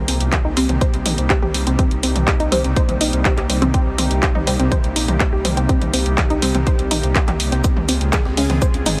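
Driving and dramatic, this melodic techno excerpt runs at 123 BPM in C phrygian, with a punchy, up-front electronic kick and a house kit of handclaps, toms and bright hats pushing a dark, rumbling detuned saw bass that pumps with sidechain, while a lush unison pluck spins delayed arpeggios and an evolving, warbling wavetable pad holds chorused chords over Cm7 moving to Dbmaj7 at 7.6 seconds. A muted, very quiet filtered dub chord stab with phaser sits beneath, and at 7.6 seconds a gritty, pitched-up breakbeat sampler kit of hi-hat, shaker and high-tuned snare slips in faintly. The mix carries light reverb and a heavily compressed, radio-like sound.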